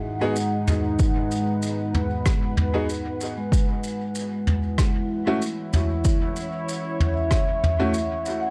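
Deep and spacious, this ambient dub fragment drifts over a moody, warbling pad of sustained chords with chorus and reverb, while soft-mallet vibraphone arpeggios ring through tape echo, a woody, boxy upright piano drops short stabs into dub echo, a brushed kit of rim clicks, shaker and toms trails its own dub echo, and a punchy, layered electronic kick sits up front from 1.0 to 7.4 seconds, all moving from G#m7 to F#7(no3) in a dark, dry production.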